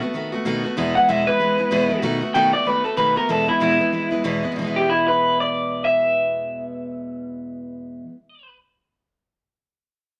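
Swung eighths drive this retro, upbeat rock excerpt, where a full-bodied, picked steel-string acoustic guitar lays down a B7-to-E accompaniment from the start while a twangy, slightly broken-up electric guitar through a small old amp enters at 1.0 s with a bright, lo-fi melody placed up front, all in a moderate studio reverb.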